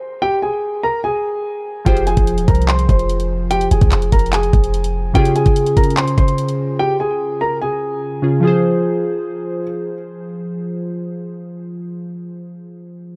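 Dry and close, this brooding, eerie half-time trap fragment in F minor at 146 BPM opens with a dark, mellow grand piano carrying the melody with delay and audible action noise, joined at 1.8 seconds by glassy, chorused digital keys and at 1.9 seconds by a deep, boomy 808-style sine bass and an up-front electronic kit of knocking kick, handclaps and bright hi-hats, as the harmony moves from Fm to Db and back before the drums stop at 6.6 seconds.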